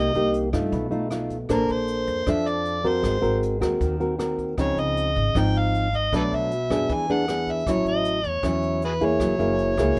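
A straight, relaxed bossa nova groove in 4/4 rides on a distant, roomy brush kit with a punchy kick, rim clicks and hi-hat, while a woody, growly pizzicato upright bass anchors the low end. Up front, a dark, full-bodied nylon-string guitar, thumb-plucked in a deep classical manner, moves through lush jazz changes such as Cm7, Bbmaj9, Dbmaj9 and A6. Over it, a gritty, amplified harmonica sings a romantic jazz solo with light vibrato, scooped notes and tongue slaps, all in a dry, intimate mix cut from a longer piece.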